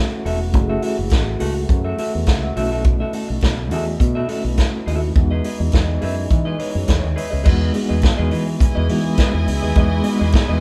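Disco groove at 104 BPM in a straight 4/4, danceable and driving, cut from a longer piece and played by a band live in one room with light reverb. A reed electric piano with a reedy, fast tremolo carries the accompaniment alongside a clean, picked semi-hollow electric guitar, while a mellow French horn section holds sustained chords from a distance in the background. A round, punchy fingered electric bass and an up-front vintage drum kit enter at 0.3 seconds, the kit with a tight kick, medium-tuned snare, hi-hat and dark crash cymbals under a rolled-off top. The harmony moves from F#m7 to B7sus4 and then Emaj7. At 8.6 seconds a bright, lush symphonic string section joins with an intense, vibrato-rich second line in the closing section.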